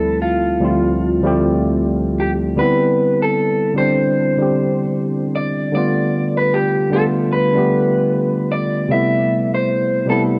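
This hip hop excerpt is hazy and nostalgic, moving at an unhurried 76 BPM in 4/4 with a loose swing on the sixteenths. A barky, worn tine electric piano carries the accompaniment from low in the bass up into the middle register. It sounds slightly out of tune, as if played through its built-in speakers, and is dulled by a low-pass filter and cassette tape coloring. Up front beside it, an electric guitar played through a small old amp picks out a melody in a higher register; its tone is dark, slightly broken-up and lo-fi, and it is also softened by a low-pass filter. The harmony drifts through Dm11, Cmaj7, G7 and Am9 before the guitar stops at 10.2 seconds and the piano at 10.4. A moderate plate reverb and the warbling pitch drift of aged tape wrap the whole mix in a faded, dreamy glow.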